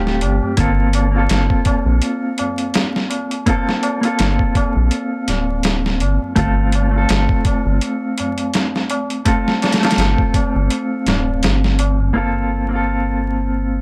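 Brooding, hypnotic trip hop at 83 BPM in G minor with swung 16ths, where a dark, clean electric guitar with tremolo, 12-bit sampler grit and tape echo plays over Gm11 and F/G chords, a round, deep analog bass with tube saturation sits up front, a dusty, overdriven soul drum kit with a thumpy kick (which drops out from 10.7 to 12.2 seconds) drives the groove, and a low-tuned, ringing tabla adds quiet color, captured in a dry, gritty recording with vinyl crackle.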